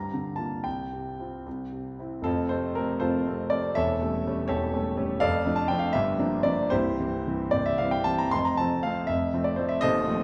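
Passionate and warm, this romantic classical character piece for solo piano unfolds in a rubato 6/8 at about 72-85 BPM in F major. A smooth, vintage-toned grand piano sits up front, ranging from C1 to C6, and moves from Gm7 through C to a resolution on F at 2.3 seconds before a second section passes through A7/E and Dm/F, then returns to F at 8.3 seconds. The whole fragment, cut from a longer work, is bathed in the lush, lingering reverb of a church or concert hall.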